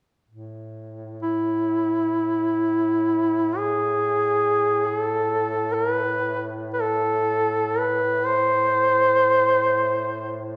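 Set in free time, this mournful, solemn Caucasian folk lament in A harmonic minor opens with a low duduk drone on A2 at 0.3 seconds, sitting up front. A second duduk enters at 1.2 seconds to carry a vibrato-laden melody between E4 and C5 in a folk style. Both reeds have a warm character, and the wet recital hall reverb, with a 1.6-second decay, gives the pair a church-like spaciousness. This short passage, cut from a longer piece, is tuned to A4 = 438 Hz.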